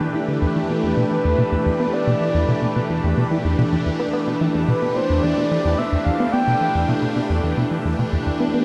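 A straight 4/4 pulse at 109 BPM drives this mysterious, expansive stretch of sequencer-driven ambient space music in E minor, resting on a single Em7 chord and cut from a longer piece. A punchy, funky analog bass riff with a filter pluck and a dark, decaying tail runs throughout beneath an evolving wavetable pad of sustained chords, bright and up front with morphing detuned unison, phaser and built-in reverb. From 0.8 to 6.9 seconds, a soft, breathy flute-like synth lead carries the melody with vibrato, chorus and analog delay, all set in a dark production bathed in a long shimmer reverb.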